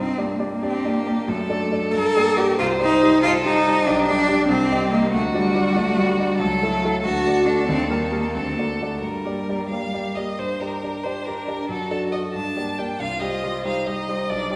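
The music moves in 6/8 at 93 dotted-quarter beats per minute, with a rubato feel that lets the pulse stretch and give. This quick, dramatic and urgent classical-period movement for piano trio sits in G minor, circling through Gm, D/F# and Cm harmonies, with a brief turn to Eb before settling back on G minor. The cello and concert grand piano begin together at 0.0 s, the cello carrying a second line with a soft attack, vibrato and expressive portamento, heard close and up front, while the piano's accompaniment offers a smooth, vintage tone with deep bass. The violin takes the melody from 0.6 s, bowed by one player with an even, rich vibrato that sounds distant in the mix. The opening section returns at 10.4 s, and the whole passage sits in a wet scoring-stage reverb heard from further back in the room, cut from a longer piece.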